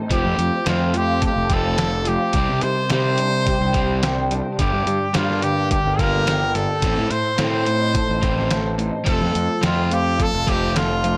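A brilliant, punchy trumpet with light vibrato and analog delay leads this moody, restless indie rock fragment from 0.1 s, over a crunchy overdriven guitar riff, a lo-fi, slightly broken-up second guitar riff through a small old amp with ensemble chorus, a fuzz-soaked fingered bass, and muffled, pitched-down trip hop sampler-style drums with a thumpy kick, all moving through F, Cmadd9, Gm and Adim before returning to F in light reverb.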